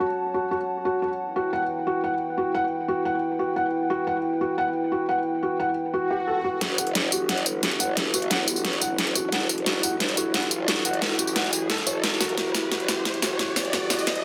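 Dark technical drum and bass with an aggressive, tense mood, opening on a muted felt piano with audible action noise playing arpeggios through a dub echo over a detuned, nasal analog pad holding sustained chords that move between F#m and Emadd9. A background swell arrives at 6.0 seconds, and at 6.6 seconds a layered, overdriven dubstep kit of hi-hat, deep snare and tambourine hits up front with a fill across the build-up, joined by a saturated, wobbling growl bass under a riser. The plate reverb is moderate and the master dense and heavily limited in this fragment of a longer piece.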